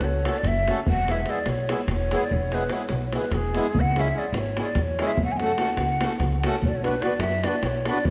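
Bittersweet and virtuosic, this short cut from a longer Balkan folk piece carries the lift of a wedding band in a straight 7/8 metre. A breathy, mellow ney leads the melody up front, its end-blown reed cane tone tongued and shaded with vibrato, bright in the highs and trailed by a slapback echo. Beneath it, a pizzicato upright bass sits forward with a woody, thumpy steel-string sound, while a tight, vintage davul with a band-limited character drives the percussion. An accordion slips in at 0.2 s, its reedy, slow-beating tone filling the accompaniment just behind the other parts. The harmony moves from F#m through E and C#m and back to F#m before turning toward Bm at 6.6 s, all set in a wet recital hall reverb.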